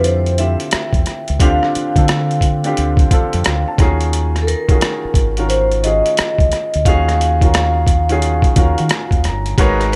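A gritty, compressed boom bap drum kit sits up front with a thumpy kick, hi-hat and rim click under a round, punchy fingered electric bass, a warm baby grand piano with short sustain and fills at 3.1 and 8.2 seconds, and a metallic, ringing vibraphone melody with slow motor vibrato and slapback echo, in this smooth, late-night neo-soul R&B excerpt at 88 BPM with a swung 16th feel, moving from Dm11 to D#m11 at 3.8 seconds.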